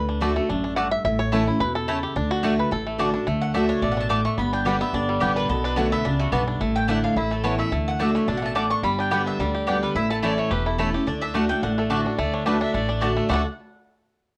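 A twangy, percussive fingerpicked banjo sits up front in this virtuosic, rustic bluegrass fragment, taking a featured turn at the start over a full-bodied picked dreadnought guitar with audible finger squeak and a thumpy, woody pizzicato upright bass on gut strings. A picked mandolin adds double-string stabs throughout, while a second, bright mandolin takes up a melody at 3.4 seconds, and a rich, nasal, reedy fiddle slips in as a background second line at 10.2 seconds. The whole piece has the sound of a small room heard through worn cassette tape, with a warbly pitch drift.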